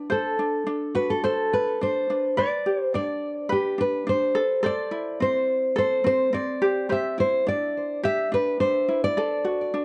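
Easy-going and heartfelt, this pop piece in G major moves at a straight 106 BPM in 4/4, its opening on D7 resolving to G at 2.4 s before passing through Am, Cadd9 and D. A light, mellow fingerpicked ukulele carries the accompaniment from the start, while a classical nylon-string guitar with fresh strings takes the fingerpicked melody, touched with delay and sitting slightly louder. Both instruments sit up front in a dark production with light reverb, and the passage is cut from a longer piece.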